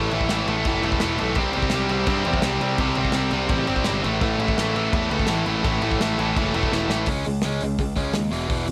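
This dry punk rock excerpt, cut from a longer piece, puts two biting overdriven electric guitars up front over a rebellious, upbeat drive at 168 BPM in a straight 4/4. One guitar has a bright edge and the other a warm one, both picked and grinding through power chords on A, C and back to A. Beneath them a growling picked electric bass, direct and amped and overdriven, adds a bright, punchy low end. A loose acoustic indie drum kit with a small-room feel brings a punchy kick, a medium-tuned snare and dark, rolled-off cymbals on hi-hat and crash. A drum fill at 6.7 seconds leads into a shift to C#5 at 7.1 seconds, where the second guitar drops out and the first guitar, the bass and the drums push on together.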